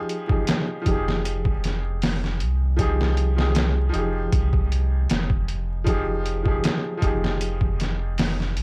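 A muffled, pitched-down, compressed sampler-style drum kit with a thumpy kick, medium-tuned snare and hi-hat sits up front, overdriven, in this dark, melancholic trip hop excerpt, joined at 0.9 seconds by a deep, round dub sub bass while a woody, brilliant upright piano accompanies on an Fm9 chord through harmonic tremolo, the whole captured as a dry, gritty hardware recording with vinyl crackle.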